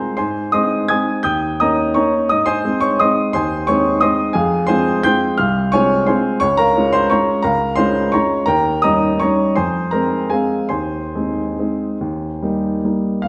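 A woody, polished upright piano plays alone and up front for the full 13.3 seconds, its long sustain carrying each chord into a wet recital-hall reverb. This classical waltz fragment in 3/4 moves with a free, rubato lilt. The mood is playful and sparkling, heard through a mellow, shadowed production.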